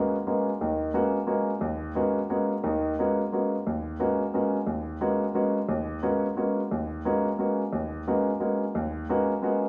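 A warm grand piano plays alone and up front in this brief jazz excerpt, its present tone ringing with long sustain over a single G#m11 harmony in G# minor. Set in a swung 3/4 at 177 BPM, the mood is spiritual and hypnotic, with the piano staying in its lower and middle register. A moderate large-studio reverb gives the nearly ten-second fragment, cut from a longer piece, a live-room feel.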